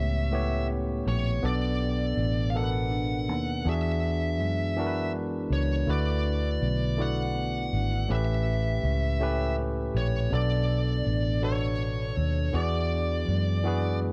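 Dry and gritty with an intimate, warm feel, this slow six-eight R&B excerpt sets a distorted high-gain lead guitar melody over a barky, lightly overdriven tine electric piano and a round, punchy foam-muted fingered bass up front, while a dark, clean, very quiet second guitar line drifts beneath through chords like A9, Bm7, E9 and D6/9.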